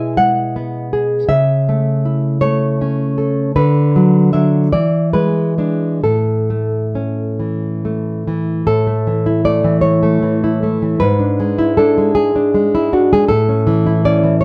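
A lilting 6/8 pulse moves slowly and freely, the dotted-quarter beat drifting between 43 and 54 BPM with generous rubato, giving this romantic piece for solo classical guitar a tender, sunny character in A major. A single nylon-string guitar carries everything from start to finish, its warm, thumb-plucked tone sitting up front and spanning a range from G#2 to G#5. The harmony moves gracefully from E/B through A/C# and Bm/D to E7 before settling on A at 6.1 seconds, then returns through E7/G# to close on A at 13.3 seconds. The phrase is heard twice, with the repeat beginning at 8.7 seconds. A wet studio reverb gives the guitar an intimate, rounded bloom, and the 14.4-second passage is cut from a longer piece.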